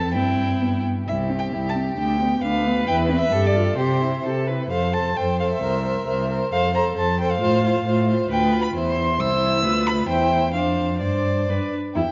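In a lively 2/4 at 133 BPM, taken with a flexible rubato, this cheerful, quick classical-period movement for string quartet sets out in C major, turns to F major at 4.7 seconds and comes home to C major at 8.3 seconds, closing as a Gsus4 gives way to a rootless G chord. A clear, close first violin sings the melody with smooth, even vibrato, over a more distant second violin and a focused viola adding inner lines, while the up-front cello carries the bass with soft attacks, expressive portamento and a slightly louder presence. A moderate scoring-stage reverb and a dark, warm production soften the top of the sound in this short cut from a longer piece.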